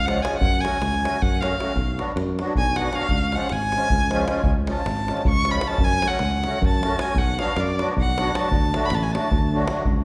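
A bowed solo violin opens this fiery, bittersweet Balkan wedding-band passage at 0.0 seconds. It sits up front with a focused, vibrato-rich tone and a smooth top as it carries the melody between D5 and C#6. Beneath it, a sustaining fretless electric bass growls from the start, its direct, punchy sound anchoring the low end. From 0.1 seconds a musette accordion adds reedy, shimmering, airy accompaniment, and a deep davul, close and dry, drives the music in a brisk 7/8 at 311 BPM counted in eighths with a straight feel. Set in C# phrygian dominant, the harmony moves through F#m, Bm and C#, then F#m, Bm and D, and the ensemble rings in the wet reverb of a church or concert hall in this clip cut from a longer piece.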